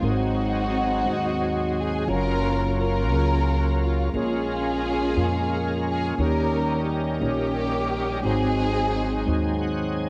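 A cassette-worn home recording with light reverb and small room ambience carries this uplifting, hopeful gospel fragment in a slow 6/8 at 58 BPM, where a lush, bowed studio string section sings the melody up front over mellow tine electric piano accompaniment, a bright, shouting tonewheel organ with slow rotary speaker, overdrive and chorus vibrato holding sustained harmony before a short fill at 9.3 seconds, and a woody, thumpy pizzicato upright bass, all moving through Ab7, Gbmaj7, Bbm7 and Eb7.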